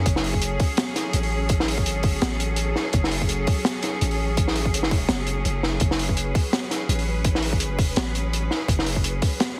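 Heavy and cinematic, this half-time drum and bass excerpt moves at 167 BPM in F# minor with a swung sixteenth feel, resting on a single F#madd9 chord throughout its roughly 9.6 seconds. A lush, intense cello section holds bowed chords with vibrato and a pumping sidechain effect, while a deep, sine-like 808-style bass sustains low and up front. A gritty, saturated breakbeat kit with a high-tuned snare and hi-hat pairs with a tight, layered electronic kick, all under light reverb and a heavily compressed radio-like sound.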